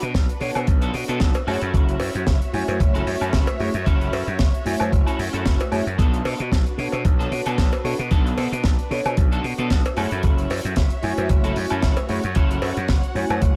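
Set in a roomy studio reverb, this sleek, sensual nu-disco excerpt rides an up-front, thumpy electronic kick and a tight funk kit with a high-tuned snare, hi-hat and woodblock, plus a small-room cowbell, under a growly overdriven slap bass and a twangy, slightly broken-up guitar riff with chorus and tape echo, while a clean tine electric piano through phaser and tape echo accompanies and lush bowed strings in the background sustain the Bm7 to F#m7 changes, the strings and bass pumping with sidechain compression.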